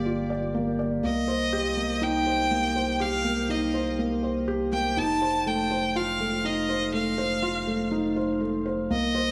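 A huge ambient reverb, hanging for about 4.1 seconds, surrounds this moving, melancholic piano and strings electronica excerpt at 122 BPM in a straight 4/4, moving through Gm7, Cm7 and F7. A soft, dark upright piano, muffled by thick felt and touched with digital delay, sits intimately up front playing a riff, while a deep, round sine sub bass sustains underneath. From 1.0 seconds a single bowed violin, rich and focused with vibrato and its own digital delay, carries the melody up close.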